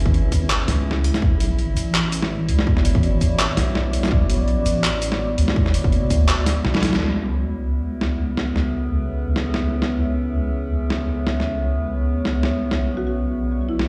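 A swung, half-time drum and bass groove in 4/4 drives this spacious, cinematic fragment of a longer piece. A gritty, pitched-down, sampler-style kit with overdrive sits up front, carrying a high-tuned snare, handclaps, hi-hat, shaker and toms. A heavy electronic kick joins it until 6.2 seconds, and a drum fill with a band accent leads into the second section at 7.0 seconds. Underneath, a deep, saturated wobble bass with chorus holds the low end, while a dark, moody, detuned sawtooth pad with sampler grit and sidechain pumping sustains minor chords in its own reverb. An eerie, metallic, inharmonic drone, built from FM and ring modulation, hovers alongside with chorus and reverb. At 13.0 seconds a woody, buzzing marimba struck with medium mallets adds a brief melodic figure through digital delay, and the whole mix sits in a roomy digital reverb that suggests a big sound system in a bare room.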